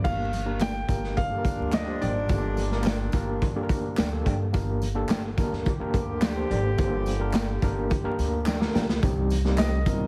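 Uptempo 1960s-style soul at 107 BPM in a straight 4/4, passionate and urgent, cut from a longer piece and sitting on G minor before a shift to C minor at 9.0 seconds, with a heavily compressed radio sound, vinyl crackle and light small-room reverb. A raw garage drum kit sits up front with a boomy kick, dark cymbals and a saturated, gritty edge, playing a fill from 8.5 to 9.0 seconds, while a woody, thumpy pizzicato upright bass, a barky overdriven tine electric piano with medium tremolo, quiet soft-handed congas, and background tambourine, egg shaker and group handclaps fill out the groove. A clear, natural baby grand piano carries the melody at the opening and returns briefly at the end, a tight jazz-style horn section with a soft attack plays a second line from 1.2 seconds, and a slightly broken-up, lo-fi electric guitar with subtle chorus adds picked stabs in the background.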